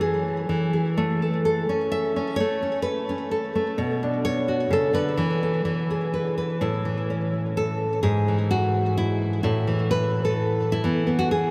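A fingerpicked nylon-string guitar carries this pastoral, peaceful folk piece alone in a three-beat metre, its deep classical tone sitting up front with audible finger squeaks and delay. Cut from a longer work, it moves through gentle chords such as Aadd9, Bmadd9 and Esus4 before a second passage begins at 6.6 seconds and settles back onto E by 10.8 seconds. A huge ambient reverb, lingering for about 9.1 seconds, soaks the whole mix and gives it a dreamy, floating atmosphere.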